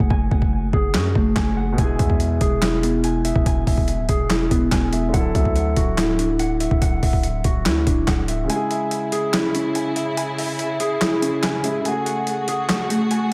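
A clean, mellow electric guitar plays arpeggios bathed in spring reverb and delay, with a muffled dark grand piano underneath, as this melancholic, eerie half-time trap excerpt at 143 BPM in C# phrygian opens on a break lasting until 1.8 seconds. A gritty, pitched-down sampler drum kit with a thumpy kick, handclaps, hi-hat and snare sits up front, overdriven and roomy, beside a heavy, aggressive distorted 808 bass moving through F#madd9, E and Dadd9. At 8.5 seconds the bass and kick drop away and a woody string section with light vibrato enters on sustained C#m chords before returning to F#madd9.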